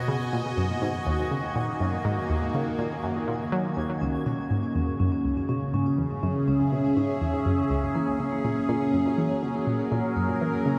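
An up-front analog pluck carries a round, ring-modulated riff with a sweeping filter and chorus and delay, driving this hypnotic, expansive space-music excerpt at 122 BPM in C# dorian. A bright, morphing wavetable pad sustains detuned chords through a phaser, while a sparkling granular texture shimmers in the background until 4.0 seconds, when a close-miked, metallic vibraphone takes over with delayed arpeggios. Harmony moves from D#m to C#m and then F#add9, all bathed in a huge, dreamy reverb.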